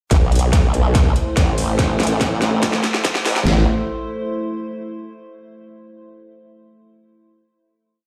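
A half-time 4/4 pulse at 143 BPM drives this short, menacing piece of heavy wobble dubstep in A minor, built entirely as a build-up over an A minor chord from 0.1 to 3.5 seconds before a final chord rings out to 5.1 seconds. Two layered electronic drum kits carry a drum fill through the build: one pairs a punchy kick with a deep, overdriven snare re-recorded in a small room, while the other, quieter kit sets a huge, high-passed snare against metallic closed and open hats with a tape-warm tint. Up front, a formant-sweep wobble bass growls between A1 and C2, its detuned sawtooth and sine tones shaped by a formant filter, chorus and overdrive into compressed, modulated phrases with changing wobble speed. From 0.7 seconds a softer evolving wavetable pad sustains chords from A3 to C5, its morphing, detuned unison voices slow to attack, washed in chorus and built-in reverb and pumped by sidechain compression. 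A filter sweep runs across the build, and the whole mix sounds as if played on a big sound system in a bare stone room, with light reverb and a high-pass filter thinning the lowest end.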